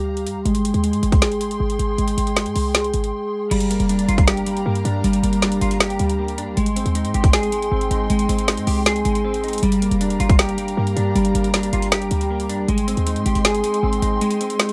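A trap kit sits up front with a hard-clipped kick, a woody snare, metallic hats and crash, driving a dark, hard-hitting trap cut at 157 BPM in a half-time feel in G phrygian, beside a punchy, tight 808-style bass with a noise layer. Muted, warbling felt-like synth keys play intimate arpeggios through chorus, low-pass filtering and digital delay, while a lush bowed string section holds sustained chords underneath, and the harmony moves between Abmaj7 and Gm7. After a brief break at 3.1 seconds, a clean, compressed electric guitar enters at 3.5 seconds, and the kick drops out from 14.2 seconds in this fragment of a longer piece, all set in light reverb.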